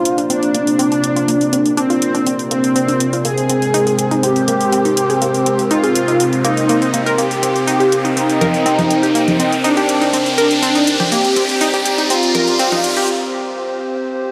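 Melodic techno at 122 BPM in a straight 4/4, this dramatic, cinematic build-up cut from a longer piece sets an up-front, smooth supersaw melody over a deep, moody analog pad, an evolving analog drone and a faint, warbling tape-like pad that adds nostalgic lo-fi haze. A bright, round analog pluck spins arpeggios through a filter sweep, while overdriven electronic hi-hat and congas drive the pulse and a riser climbs from 2.7 seconds over chords moving from Bbadd9 through Abadd9 and Eb6 to C7(no3). The gritty hardware sound carries light reverb, and at 13.1 seconds everything but the dark pad falls away for a brief break that runs to 14.3 seconds.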